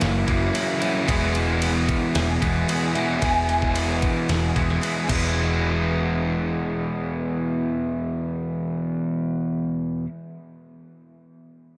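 An up-front, hollow-bodied overdriven semi-hollow guitar riff leads this wistful, hazy shoegaze and dream pop rock excerpt at 112 BPM in E lydian. Alongside it from the start play a crunchy overdriven guitar riff washed in reverse reverb, a dark, round, foam-muted electric bass, and a shimmering, octave-doubled twelve-string acoustic guitar playing arpeggios with ensemble chorus and tape echo in the background until 6.1 s. A barely audible sawtooth string-machine viola chord sounds in the opening second, and a detuned 8-bit drum machine with a thumpy kick drops its kick and snare at 4.8 s before the drums stop at 5.2 s.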